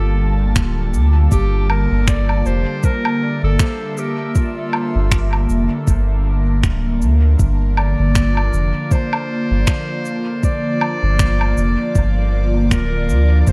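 Hazy and meditative, this ambient dub excerpt in G dorian drifts at 79 BPM with a 16th-note swing, as a bright, smooth-topped solo clarinet carries the melody through dub echo over an airy, breathy pad treated with chorus and phaser, a deep, round sub bass sitting up front, and, from 0.6 seconds, a soft, tape-tinged electronic kick with echoing finger snaps, shaker and woodblock, all blurred in a dreamy plate-reverb haze as the harmony moves from Gm9 to Bb at 7.4 seconds.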